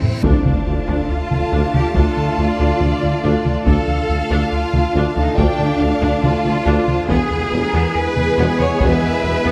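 A hybrid orchestral and electronic film score at 70 BPM in 4/4, futuristic and vast, this excerpt opens with a drum fill, a huge dark reverse cymbal and an impact that rings until 3.7 seconds, over a rubbery, bouncy square bass riff, close and dry taiko struck with hard sticks, and a glassy, ethereal FM pad with ensemble chorus and built-in reverb. Beneath them sit a focused, close cello section, a very quiet, distant double bass section, a mellow, roomy tuba and a very quiet French horn section holding sustained chords, while a lush viola section and a smooth, even studio violin section add background lines. An intense, vibrato-rich symphonic violin melody enters at 1.9 seconds as the harmony moves from D minor to E at 7.1 seconds, all set in a moderate scoring-stage reverb.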